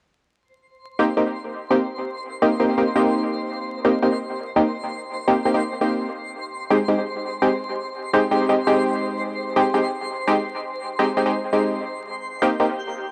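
A band-passed chord stab sits up front in this drum and bass excerpt, its nasal, detuned sawtooth tone plucking in with a fast attack and decaying under chorus, cassette-tape coloring and dub echo, while a filter sweep runs across it from 0.4 seconds onward. The harmony moves from Cm7 to Abmaj7 at 6.1 seconds and back to Cm7 at 11.8 seconds, keeping the piece rooted in C minor at 168 BPM in a straight 4/4. Far behind the stabs, a twinkling granular texture enters at 0.8 seconds, its FM shimmer sparkling an octave up with a slow attack, long release and its own built-in reverb. The mood is nostalgic and dark, cut from a longer piece. The sound is dry and gritty with light reverb and a bed of vinyl crackle, giving it a hardware-recorded character.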